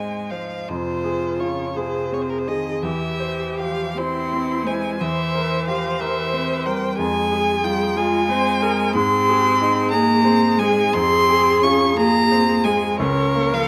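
A bowed violin carries the melody up front with a focused, rich tone and vibrato, over a smooth, even cello line and a clear, open baby grand piano with long sustain, and a viola joins the accompaniment at 0.7 s, expressive with portamento. This tender slow movement for piano quartet, cut from a longer piece, moves in 6/8 with flexible rubato, and its harmony shifts at 8.9 s. The close, detailed sound has little reverb, so each single player comes through intimate and present.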